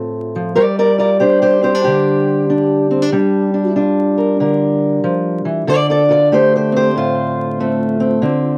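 Mournful and smoky, this short acoustic country blues fragment, cut from a longer piece, rests on a single fingerpicked steel-string parlour guitar with a dark, boxy tone, sitting up front and swinging its eighth notes over a rootless Dm7 that moves to Gm7 and returns to Dm7 at 5.7 seconds. The close, dry 1970s-style studio sound carries light reverb, studio ambience and a bed of vinyl crackle.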